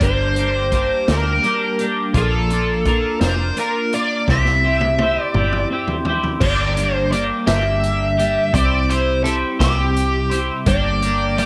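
A small room holds this mysterious, dark psychedelic rock excerpt in a slow 6/8 at 56 BPM, where a smooth overdriven lead guitar sings its melody through wah and tape echo over a bright, double-tracked twelve-string electric riff shimmering with harmonic tremolo, a round, foam-muted dub bass, and a vintage kit with punchy kick and rolled-off top that plays a fill from 4.3 to 6.4 seconds as the chords move from Gm through Bb and C.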